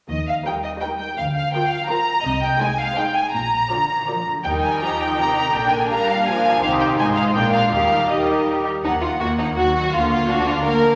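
A wet scoring-stage reverb surrounds this lively, graceful excerpt of a quick classical-period movement for string orchestra in Eb major at 165 BPM in 3/4: a clear, up-front violin section carries the melody from 0.1 s, a second violin section with a rich, distant tone adds its own line and lush violas fill in the accompaniment from 0.5 s, background cellos and the double basses hold down the bass with bowed vibrato, and the harmony darkens to Eb minor at 8.8 s.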